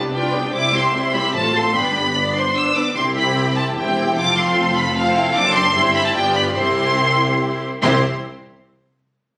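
A lively, graceful classical-period movement for string orchestra in triple time opens with the second violins, violas, cellos and double basses sounding together, and the bowed first violins enter at 0.1 s with a lush, focused melody held up front. The violas give an even, smooth accompaniment while the woody cellos sit in the background and the double basses share the bass line with them, and the harmony settles back on C at 6.6 s. The sound carries a moderate large-studio reverb and compression with the roomy character of a phone capture, in a passage cut from a longer piece.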